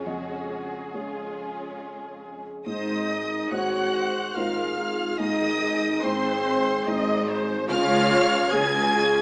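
In a rubato 3/4 at 72 BPM, this hopeful, moving cinematic orchestral excerpt sets a lush, vibrato-rich violin section on the melody over a second, more distant violin line, an expressive viola section with portamento, a soft felt-muted upright piano, ringing fingerpicked harp arpeggios, and smooth cello and double bass sections on the bass. At 2.7 s a dark solo clarinet and a pure silver flute join with second lines while a very quiet, mellow French horn section holds sustained chords, all heard in a wet scoring-stage reverb with a small-speaker sound and tuned to A4 = 445 Hz.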